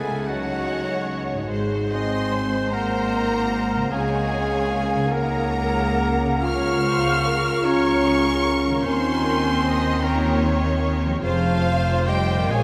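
Lyrical and tender, this classical excerpt drifts in a rubato 6/8 at 50 BPM, where a rich, expressive violin section sings the vibrato melody over a bright oboe, a clear, intense second violin line in the background and a mellow, hollow silver flute, while focused violas accompany, a dark French horn section holds soft-attack sustained chords, a ringing, fingerpicked harp weaves background arpeggios, and smooth cellos join even double basses on the bass, all bathed in a huge, wet reverb that places the ensemble in a vast, echoing space as the harmony moves from Ebm7b5/Db through Eb7 to settle on Fm at 11.2 seconds.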